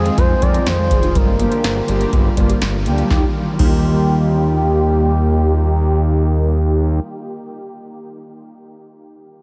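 A straight 4/4 pulse at 123 BPM drives this upbeat yet wistful synth-pop passage in Eb major, cut from a longer piece. A dry, up-front analog drum machine supplies a deep kick, punchy snare, metallic hi-hats and crash cymbal until 3.7 s. Beneath it, a fat, detuned sawtooth bass sits prominently in the mix. A round, brassy synth with chorus, phaser and vibrato and a swirling, nasal pad in the background carry the harmony from Fm7 to Gm7, then on to Ebadd9 at 3.1 s. An expressive synth lead sings a smooth, dark melody between G4 and D5, coloured by chorus, vibrato and analog delay, while a very quiet, squelchy blip pluck adds resonant arpeggios. Huge ambient reverb soaks the whole mix into a dreamy haze with a softened top end.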